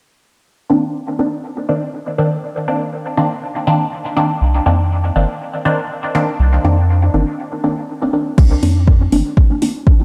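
Cavernous and deep, this dub techno fragment at 121 BPM in C minor opens on a Cm9 with a muted, detuned sawtooth chord stab carrying phaser, dub echo and sidechain pumping, joined at 4.4 seconds by a round, nasal analog bass and at 8.4 seconds by an overdriven electronic kick up front with a deep house kit of metallic hats and crash, all set in light digital reverb.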